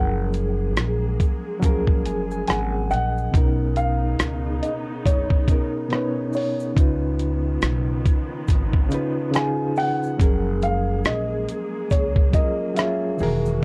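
A barky, reedy electric piano sits up front in this mellow, cosy lo-fi hip hop excerpt, lightly overdriven with a fast tremolo and heard as if through its built-in speakers and a cassette tape, and it plays a fill from 1.6 to 3.3 seconds. A gritty, compressed sampler-style drum kit enters at 0.3 seconds with a thumpy kick, hi-hat and rim click in a swung groove. Beneath it, a woody pizzicato upright bass with gut strings adds transformer saturation. A dark, boxy upright piano carries the melody through a plate reverb, while a lush bowed string section holds expressive chords with vibrato and a smooth top. A grainy tube shaker ticks close and dry in the background, and the whole piece wears a worn, warbling tape patina as the harmony moves from F#maj9 through Bmaj9 and C#9 and back.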